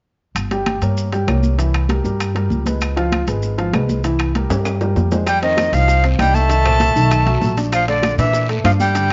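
A woody, dark pizzicato upright bass opens this driving, fiery Afro-Cuban jazz passage at 195 BPM in straight 4/4, joined at 0.4 s by a percussion bed of ringing metal-shelled timbales, damped high-tuned congas, woody claves and grainy, mellow maracas, with the congas, claves and maracas sitting in the background. An intimate baby grand piano with audible action noise enters at 0.5 s to accompany, moving through Gdim, C7b9, Db7 and C7 before a drum fill leads into a new section at 5.3 s. There, a breathy jazz flute with a crisp, chiffy attack and vibrato takes the melody up front, while a bright tenor saxophone adds a second line below it. Round, low-tuned bongos played with soft hands and a raspy guiro slip in quietly at the same moment as the harmony shifts through F5, Cm7, B7 and Bbmaj7. The whole sits in light reverb and small-room ambience with a rolled-off top end, and the recording is cut from a longer piece.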